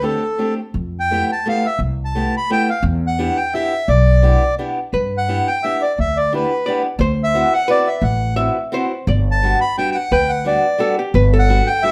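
Recorded live in one room with moderate studio reverb, this nostalgic, charming musette waltz in G major moves at 174 BPM in 3/4 with a light swing and rubato. A reedy, close-miked accordion carries the melody up front, over a boxy, fingerpicked ladder-braced acoustic guitar with audible finger squeak and a woody, growly pizzicato upright bass on steel strings. After the harmony has moved from D7sus4 and Fmaj9#11 to Em7, a dark, clean hollow-body archtop guitar adds a second line at 4.9 seconds as the chords continue through G6 and D13 to Gmaj7.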